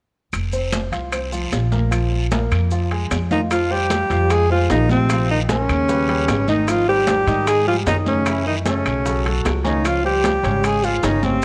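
A clear, close-miked alto saxophone with vibrato takes the melody from 3.3 seconds in this fiery, driving Afro-Cuban jazz excerpt, joined by a dark, punchy trombone on a second line in the background, while an up-front pizzicato upright bass with steel strings and an intimate concert grand piano with audible action noise play among bright high-tuned congas, ringing metal-shell timbales, raspy guiro, grainy maracas, very quiet woody claves and tight bongos that enter at 3.5 seconds, set in light small-room reverb.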